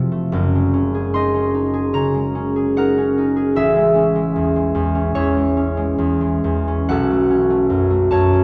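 Played in a free, rubato 4/4 that drifts between 64 and 78 BPM, this short classical passage for solo concert harp feels dreamy and serene. The acoustic harp is fingerpicked and placed up front, its ringing strings spanning from a deep F1 up to C6, with the instrument tuned slightly high at A4 = 441 Hz. The harmony moves slowly through F#6/9, then Amaj7 at 3.6 seconds, and settles on a suspended B9sus4 at 6.9 seconds. A moderate church reverb with a long 3.3-second decay gives the sound a spacious, floating halo. The production is dark and warm, and the phrase ends after 8.4 seconds, as it is cut from a longer piece.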